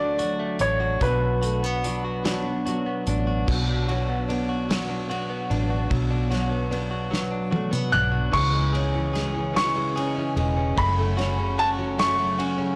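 A clear, polished baby grand piano carries the melody in this melancholic, aching six-eight pop ballad, dropping out at 2.6 seconds and returning at 7.9 seconds, while a woody, double-tracked fingerpicked steel-string acoustic guitar, a bright direct-recorded electric guitar with a warbly pitch drift playing arpeggios, and a dark, foam-muted vintage bass hold the slow 49 BPM pulse throughout. A loose indie drum kit with a tight kick and rolled-off top rides beneath, breaking into a fill from 7.1 seconds as the harmony moves from D and Bm to C#m and F#m. The sound sits in a small room with light reverb, but the recording is blown-out and overdriven with lossy compression artefacts, a rough edge on what is cut from a longer piece.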